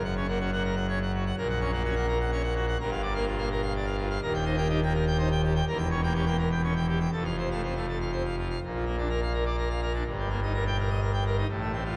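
Drenched in a cathedral's 4.5-second reverb, this jubilant, majestic classical organ toccata in 3/4 at 125 BPM, cut from a longer piece and tuned to A4 = 442 Hz, features a solo pipe organ up front on full organ with brilliant mixtures and romantic voicing, spanning Eb1 to G5 as it moves from F# through Gm7, Edim7 and F, then turns to a new section on Bb at 8.6 seconds before reaching Eb/G.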